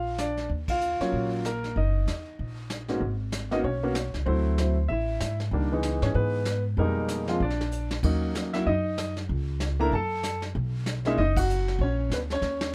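Moody and swinging, this fast jazz piano trio excerpt moves at 191 BPM in 4/4 with a swung eighth-note feel, starting in Eb minor and shifting to G# minor at 3.0 s. A warm concert grand with deep bass carries the melody up front beside a woody, thumpy pizzicato upright bass, while a vintage brush kit enters at 0.2 s and sits further back with dark cymbals, a tight kick and a pumping small-room sound. Band accents punctuate the passage, drum fills arrive at 7.7 s and again at the close, and light reverb surrounds the trio.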